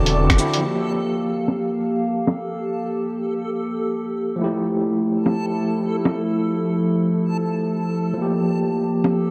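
This future garage excerpt opens with an overdriven tine electric piano, a warbly, tape-like pad and a reversed, swelling texture sounding together over a D7 chord before settling into G dorian at 127 BPM, with a swung 4/4 feel and a wistful, nocturnal mood. The barky, gritty piano, run through a combo amp, carries the accompaniment with fast tremolo, analog delay and sidechain pumping, while the detuned, nostalgic pad holds sustained chords with chorus and its own reverb, pumping in step with the beat. The reversed, dreamy texture sits quietly beneath on a single high note, its granular shimmer bright against the darker pad. A lo-fi, sampler-style kit of bongos, cabasa, finger snaps and hi-hat appears in short bursts, from 0.1 to 2.4 seconds, again from 5.3 to 6.2 seconds and briefly at 9.0 seconds. It sounds muffled and compressed under low-pass filtering, with a band accent at 0.3 seconds and a filter sweep on the drums from 0.6 seconds onward. 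The harmony moves from Gm7 to Fmaj9 and back to Gm7, all set in a wet concert-hall reverb.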